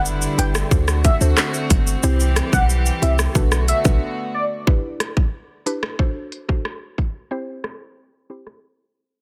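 The sound is dense and heavily limited, a dry modern master with a low-pass filter softening its top. This tough, hypnotic dancehall cut, taken from a longer piece, moves at 91 BPM in E minor with a straight feel, cycling through Em7, D7, C and Bm7. Up front, an electronic island pop drum kit with a tight kick, crisp hats, handclaps, rim click and shaker has a tape-warm, small-room character and a softly clipped snare, while a clean, boomy 808-style sine bass sits deep and dark beneath it. A velvety, detuned sawtooth lead carries the melody with chorus, vibrato and digital delay, over sustained bowed strings of reedy gut-string tone with sidechain pumping and a woody, round FM mallet pluck treated with chorus, phaser and the same pumping. A short break comes at 4.0 seconds as the bass, lead and strings fall away, and from 4.7 seconds the drums and pluck carry on through a fade-out and filter sweep until the drums stop at 8.6 seconds.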